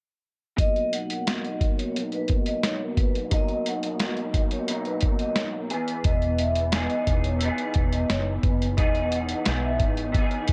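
Hazy, nostalgic bedroom pop opens at 0.6 seconds with a thumpy, muffled, pitched-down sampler drum kit carrying 12-bit grit, a slightly broken-up, chorused electric guitar drifting in pitch under a filter sweep, and a mellow soft-mallet vibraphone shimmering with lush chorus and slapback echo over Bmaj7 and Emaj7, until a round, foam-muted fingered bass enters at 6.0 seconds in this brief cut from a longer piece.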